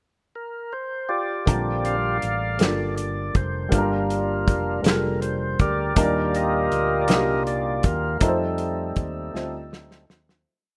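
A lightly overdriven tonewheel organ with key click and a slow rotary speaker sits up front, holding sustained chords through the pickup bar before taking the solo at 1.5 s, when a woody, slightly detuned upright piano with audible action noise, a dark, round fingered electric bass with slides and a soul drum kit with a fat snare, tight kick and rolled-off top join for a reverent, jubilant slow gospel piece in 6/8 at 53 BPM in Bb major, moving through Bb6, Gm7, Ebmaj7 and F7, with a drum fill at 9.3 s as the piece fades out from 8.2 s in a rough home demo mix with light reverb and small room ambience.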